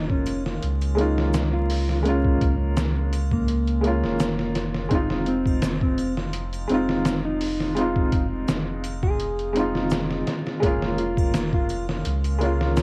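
A gritty, pitched-down sampler drum kit with a thumpy kick, re-recorded in a large room and put through cassette tape, sets a lightly swung 84 BPM trip hop groove, with a quiet ringing triangle and tube shaker in the background, while a round sine sub bass with tube saturation sits under a muted felt upright piano accompaniment run through tremolo, its action noise audible, and a dark, clean, fingered electric guitar carries the melody through dub echo, all moving from Bbm7/F to Fm7 and back in this dark, melancholic excerpt coloured by vinyl crackle and a home-cassette haze.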